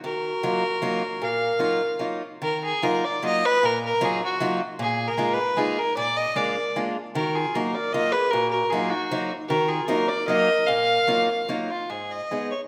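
A clear, earthy fiddle carries the melody from the very start, bowed by a single player with a smooth top and sitting up front. Beside it, a picked acoustic archtop guitar supplies the accompaniment, its warm, boxy tone close at hand with a finger squeak. A mellow clarinet adds a classical-style second line that sounds distant and roomy, dropping out at 2.0 seconds and returning at 6.4 seconds. The music is a whirling, bittersweet musette waltz in three, played with a loose rubato feel, its harmony moving from Ebmadd9 through Bb7sus4 and Bb7, then back to Ebmadd9 before landing on G#m near the close. A wet recital-hall reverb surrounds this short excerpt, which is cut from a longer piece.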